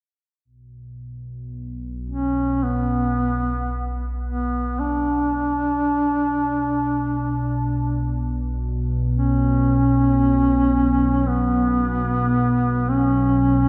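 A detuned, warbling analog drone with a filter sweep opens this unsettling dark ambient excerpt at 0.7 seconds, joined at 2.1 seconds by a mellow solo duduk singing a vibrato-laden, scooped folk melody through analog delay, all bathed in a wet, echo-heavy chamber reverb.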